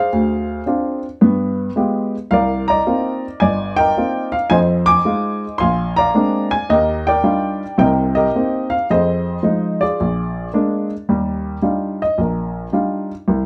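Swung eighths at 109 BPM in 4/4 carry this sophisticated solo jazz excerpt in Eb major, where a dark, mellow baby grand piano sits up front with an intimate, natural tone, short sustain and audible action noise in a moderate studio reverb, moving through a Dm7b5–G7b9–Cm11 turn and a Fm7–Bb9–Ebmaj9 cadence before arriving on Ebmaj9 at 11.1 seconds for a brief new section that runs to 13.5 seconds.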